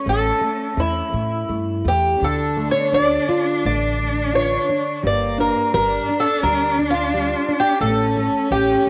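A passionate, longing fado-style ballad in a rubato 4/4, its fingerpicked twelve-string acoustic guitar carrying the shimmering, octave-doubled melody up front with audible finger squeak, while a distant bowed cello adds a rich vibrato second line, a dark, full-bodied nylon-string guitar fingerpicks the accompaniment, and a woody, growly pizzicato upright bass anchors the A, Dm, Gm and A7 changes, the guitars and cello tinted by cassette tape in a small room with moderate spring reverb on this home recording.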